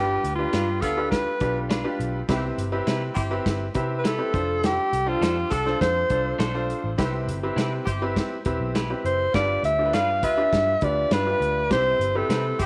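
Uplifting, danceable 1960s-style soul cut from a longer piece, led by a forceful, up-front alto saxophone with jazz-style vibrato and tape echo over a tight background horn section, a brilliant, woody upright piano, a dark, round, foam-muted electric bass, a small-room drum kit with a punchy kick entering at 0.2 s, and a compressed, slightly broken-up electric guitar adding echoed stabs in the background, all set in a moderate echo chamber reverb.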